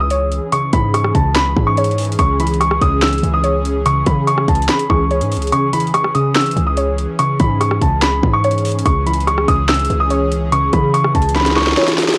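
Menacing and hard-hitting, this short excerpt of dark trap-flavored hip hop moves at 144 BPM with a half-time feel, sitting on a single C# minor chord throughout. A dark, mellow baby grand piano carries the melody high up, its smooth, long-sustaining tone trailed by tape echo. Beneath it, a warbly, dusty pluck with a detuned, lo-fi vintage character and chorus fills out the accompaniment, while an airy, breathy pad holds soft sustained chords with a slightly nasal edge. A punchy, heavy 808-style bass with a sine core and a noise layer hits with a fast attack and decays, stopping at 11.7 seconds. The up-front trap kit brings a hard-clipped kick, sharp snare, metallic hats, rim clicks and finger snaps; the kick drops out from 5.5 to 6.4 seconds, and a drum fill closes the passage from 11.4 seconds. The mix is dry and gritty, with a cassette-tape texture that gives the whole clip a worn, raw feel.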